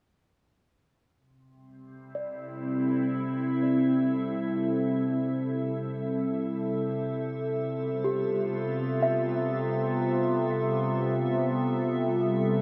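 Floating in free time with a luminous, serene mood, this ambient excerpt from a longer piece is tuned to A4 = 442 Hz and rests on an Am7/C chord that later shifts to G13/C. A small celesta enters first at 2.2 seconds, playing delicate, bell-like arpeggios in the background with a sweet, mellow, band-limited vintage tone and tape echo. Just after, at 2.5 seconds, a glassy FM pad sits up front with sustained, ethereal chords that bloom from a slow attack into a long release, thickened by ensemble chorus and its own reverb. At 8.0 seconds a resonant drone on a low C joins, its sawtooth and sine layers carrying moving overtones through chorus, phaser and built-in reverb. The whole mix is bathed in a huge, wet ambient reverb that lets every sound hang in the air.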